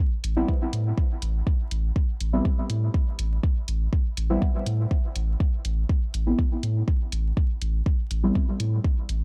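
Dub techno at 122 BPM in A minor, this short cut from a longer piece settles into a nocturnal, meditative mood over a single Am7 chord. A round, sine-like sub bass sits up front from 0.2 s, deep and sustained, with sidechain pumping giving it a breathing motion, while the layered, produced electronic kick drum enters at 0.5 s. A dry, analog-toned electronic hi-hat ticks along quietly in the background. The centerpiece is a dark, mellow chord stab arriving at 0.4 s, its soft wave-folded tone shaped by chorus, phaser, sidechain pumping and dub echo, with a fast attack and short decay. The sound is dry and gritty with little reverb, carrying a hardware character and a layer of vinyl crackle that deepens the late-night atmosphere.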